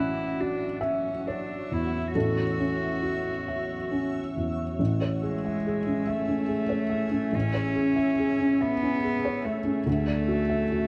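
A soft-attack, sul tasto cello carries a pure, floating second line up front over a muted, boxy felt upright piano and a blurred, detuned granular cloud pad in this hopeful, intimate neoclassical fragment in A major, drifting at 47 BPM in a rubato 6/8 as the chords move from A6 to Amaj7 at 4.8 s and Dadd9 at 9.9 s, all set in a moderate large-studio reverb.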